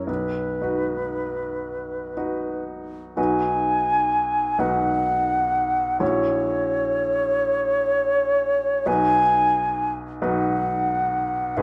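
In a rubato 6/8 at roughly 37-45 dotted-quarter beats per minute, this solemn, yearning romantic classical duo in B major, cut from a longer piece, pairs a mellow silver flute melody, airy and crisp-attacked with vibrato, against a clear, intimate baby grand accompaniment whose long sustain and audible action noise ring through a moderate recital-hall reverb, with both parts captured by close, detailed microphones as the harmony moves from B to F#7/A# at 6.0 seconds and back to B at 8.9 seconds.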